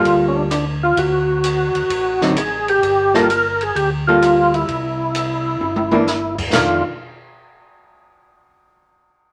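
A swinging 4/4 groove at 129 BPM drives this short, bluesy soul jazz organ trio excerpt, with a compact cocktail drum kit keeping time on a high-tuned snare, punchy kick, hi-hat, ride and rim clicks, and a drum fill at 5.6 seconds before the kit stops at 6.7 seconds. Up front, a percussive tonewheel organ carries the melody with a lightly overdriven, full tone through a slow rotary speaker and chorus vibrato, while a round, dark second tonewheel organ plays the bass line. A clean, hollow-body archtop guitar picks the accompaniment over chords moving from Gm9 to F6, all set in a wet studio reverb.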